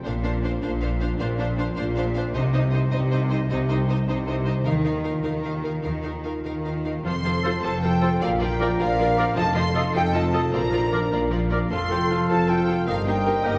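Soaring and triumphant, this heroic adventure film cue in a straight 6/8 opens with a lush building string body of focused violins carrying the melody over a smooth background violin line, rich violas, cellos and an up-front, expressive double bass section, all laced with a very quiet ringing harp's arpeggios, before warm French horns, an airy distant flute, clear soft-attack trumpet stabs, a dark vintage cor anglais and a warm clarinet join at about 7 seconds, everything bathed in a wet concert-hall reverb.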